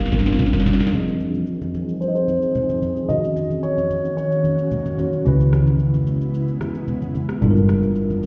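A worn, slightly out-of-tune electric piano and an ethereal, detuned pad with sidechain pumping open this deep, late-night amapiano excerpt at 111 BPM over a drum fill from a produced kit with a deep kick and sharp snare, thick-skinned congas and a brief punchy log drum bass, and then, under a filter sweep, a dark grand piano with tape echo carries the melody from 2.0 to 4.9 seconds and a bowed, woody double bass with light vibrato enters up front at 5.3 seconds, the whole mix sounding muffled through a wall in a stone room over Gm7, Fm7, Ebm7 and Dbm7 chords.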